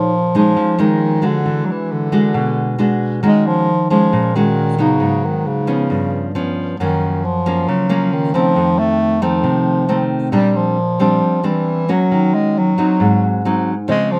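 Close, detailed microphones and a light reverb give this bossa nova fragment, cut from a longer piece, an intimate, smooth and melancholic character. A warm bass clarinet carries the melody up front in a jazz solo style, its low, dusky line shaded with vibrato and scooped notes. Beside it, an acoustic nylon-string guitar, also up front, supplies fingerpicked accompaniment with a classical touch across a broad register. The harmony moves through rich chords such as Bbm7, E9, Gbmaj7 and Bb69 before settling on Ebm7 and Ab7. Only at 13.9 seconds does a clear grand piano appear in the background, a single present note with long sustain closing the passage.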